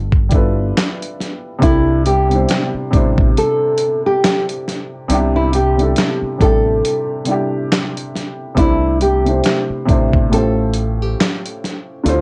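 Nostalgic and dreamy, this lo-fi hip hop excerpt in C major drifts at 69 BPM with a swung 16th feel, as a fingerpicked nylon-string guitar carries the melody through low-pass filtering, cassette tape and analog delay until 11.4 seconds, over a dark, round, punchy fingered electric bass, a gritty, compressed sampler-style drum kit with thumpy kick, medium-tuned snare, hi-hat and handclaps, and a woody, short-sustained upright piano also softened by low-pass filtering and cassette tape, all in a light reverb with a break at 6.8 seconds and chords moving from G13 to C69 and later A7alt.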